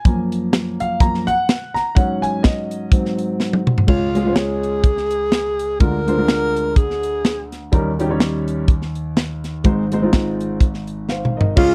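Uptempo gospel with a swung feel, this soulful, hopeful passage is cut from a longer piece and has the dry, close sound of a 1970s-style studio recording. A warm concert grand piano carries the accompaniment from the first moment, its deep bass and audible action noise giving it a natural, up-front presence, while a crisp fusion drum kit with a high-tuned snare and tight kick joins almost at once and plays drum fills at 3.4 and 11.1 seconds. At 3.9 seconds a breathy tenor saxophone takes the melody in a dark, whispered subtone, with vibrato, soft attacks and scooped notes in a close-miked jazz style, before dropping out at 7.5 seconds. The harmony moves from a hanging suspended sound into a brighter resolution as the saxophone enters. At 11.6 seconds a mellow saxophone section with light vibrato sounds briefly in a pop-style ensemble voice just as the passage is cut off.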